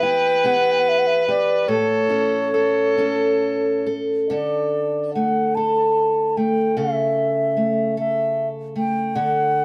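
In a rubato 6/8 at 44-53 BPM, this wistful, tender Celtic slow air in D major, cut from a longer piece, sets a pure, wooden baroque flute melody with vibrato and a soft attack over picked steel-string acoustic guitar accompaniment, while a rich, nasal, earthy viola carries a bowed second line until 3.8 seconds, all three parts up front in a live room with moderate reverb.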